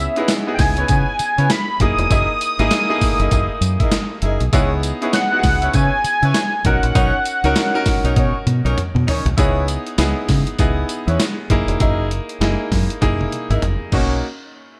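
A swung 99 BPM new jack swing groove in 4/4 drives this bouncy, upbeat R&B excerpt, where a gritty, thumpy breakbeat-style kit with gated reverb and fills at 8.2 and 13.0 seconds backs a round, foam-muted dub bass, a clear, polished grand piano, mellow jazz-style horn stabs with tape echo, and a bold, detuned sawtooth lead with chorus that carries the melody until 8.8 seconds over a C#m7, F#13 and Bmaj9 progression.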